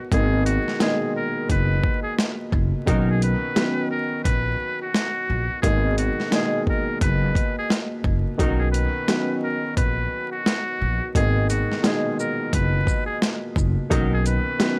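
The excerpt opens on a slightly detuned upright piano and a metal-muted trumpet, joined almost at once by upright bass and a dusty sampler-style drum kit, setting up a soulful, confident boom-bap hip-hop groove at 87 BPM in 4/4 with a swung sixteenth feel. The piano sits up front, woody and coloured by cassette tape, moving between G#madd9 and Bmaj7 chords. Beneath it the pizzicato upright bass is dark and thumpy on gut strings, while the overdriven, compressed kit brings a gritty kick, medium-tuned snare, hi-hat and shaker. Over the top the close-miked trumpet plays a jazz-style solo line, brilliant yet thin and buzzy, with vibrato. A distant, roomy horn section adds brief stabs with tape echo at 2.9, 8.4 and 13.9 seconds, each landing on the Bmaj7 chord. The whole recording is dry and hardware-raw, with vinyl crackle running underneath.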